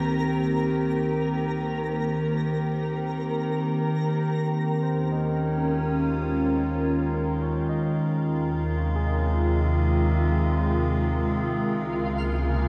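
Ambient piece at 66 BPM with a warm, weightless mood, built on a bright, morphing wavetable pad up front holding sustained chords over a round sine sub bass, while a twinkling granular texture with octave-up shimmer sparkles until 4.4 seconds and returns at 11.9 seconds, and a barky tine electric piano fades in behind with arpeggios from 4.8 seconds, all in a dreamy mix soaked in plate reverb, cut from a longer piece.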